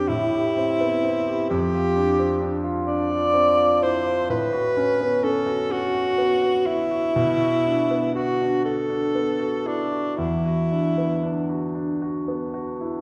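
Alto saxophone and grand piano begin together in this pastoral, dreamy fragment of a longer classical duo in an impressionist vein. It moves slowly in 6/8, around 38 to 44 beats per minute counted in dotted quarters, with a free, rubato feel. The saxophone carries the melody up front in a clear, classical style with light vibrato, staying between D4 and D5. The warm concert grand accompanies from E2 up to G4, its deep bass and natural tone sitting slightly beneath the horn. The harmony drifts from Am9 through Fsus2 and A69 to Bm and finally Esus2, keeping the mood open and unresolved. The saxophone falls silent at 11.7 seconds, leaving the piano to carry on alone until 13.0 seconds, all set back in a lush scoring-stage reverb that lingers for about 1.5 seconds.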